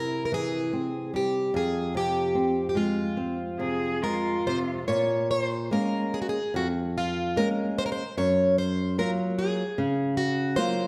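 Rubato in a loose 4/4 around 74 BPM, this mournful, longing fado-style ballad fragment moves from F minor through C and Fm chords before shifting to Bb minor at 4.9 s, where Bbm7 gives way to Gbmaj7. A shimmering, octave-doubled twelve-string acoustic guitar, picked and plugged in with a boxy parlour tone, carries the melody up front, while a fingerpicked flamenco guitar supplies close, warm accompaniment underneath. Between 3.6 and 4.9 s a single bowed cello adds a brief, expressive second line full of vibrato and portamento, and a wet recital hall reverb surrounds the whole performance.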